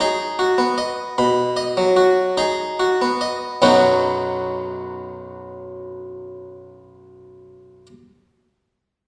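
A solo harpsichord of Italian style, plucked on a single set of strings, sounds round and close in this short fragment of a baroque-style suite movement in B major, radiant and flowing in spirit. At a slow 49 BPM in 4/4, the playing breathes with rubato, slowing down through the opening 3.6 seconds before a second section takes over, the part ranging from B1 up to B5 over a B chord. The instrument rings within a recital hall's reverberant acoustic, giving the close sound a glowing halo.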